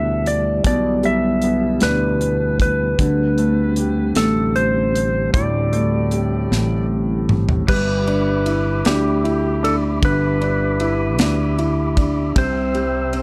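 A clean, twangy slide lap steel melody with digital delay leads this heartfelt, tender six-eight pop ballad in G major at 51 BPM, backed by smooth vintage grand piano, soft flute-like tonewheel organ chords through a fast rotary speaker, and a growly fretless bass with analog chorus, while a polished, airy studio drum kit with a punchy kick enters at 0.3 seconds and plays a fill from 6.5 seconds into the second section at 7.7 seconds, inside a dark, lightly reverberant production.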